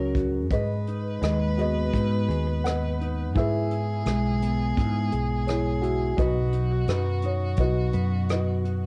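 Soft brushes on an acoustic drum kit, with a punchy kick, hi-hat and rim click, set a steady, straight 85 BPM pulse in 4/4 for this heartbroken, reflective acoustic folk-pop ballad in G# minor, a short cut from a longer piece. A round, dark fretless electric bass sits up front underneath, while a clean, compressed, fingered electric guitar carries the accompaniment through a slow F#, G#m, E and B progression. The melody comes from a felt-muted upright piano with a thick-felt, intimate tone, and a clear, focused violin with vibrato adds a distant, bowed second line. A second muted upright piano, smooth and vintage with audible action noise, plays arpeggios in the background until 6.5 s. The cassette-tape colouring on the lead piano and the drums, together with the home-recorded studio ambience, gives the whole a hushed, private feel.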